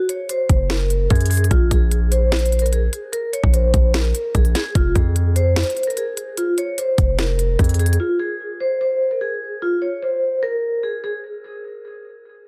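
A punchy, heavy 808-style bass with a sine body, a noise layer and a fast, decaying attack sits up front in this brooding, hard-hitting trap excerpt at 148 BPM in a half-time feel, in F phrygian over Gb, Bb7sus2 and Fm. A tape-warm electronic kit with a knocking kick, sharp snare and crisp hats drives alongside it until both stop at 8.0 seconds. A metallic, ringing vibraphone with fast motor vibrato carries an airy, low-passed melody through tape echo and plays on alone to 11.2 seconds, all in a dry, dense, heavily limited modern mix.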